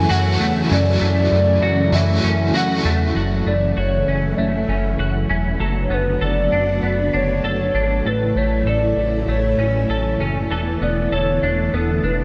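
Hazy and melancholic, this dream pop excerpt in F# minor moves at 98 BPM in a straight 4/4, with a hollow, woody clarinet-like synth lead carrying the melody over shimmering string-machine violin chords, clean picked arpeggios from a semi-hollow electric guitar, and an up-front, glossy chorused synth bass, while a bright overdriven semi-hollow guitar with tremolo adds accompaniment only until 3.7 seconds, all in light reverb as the chords pass from F#m7 through D6/F# and A6 to E7sus4.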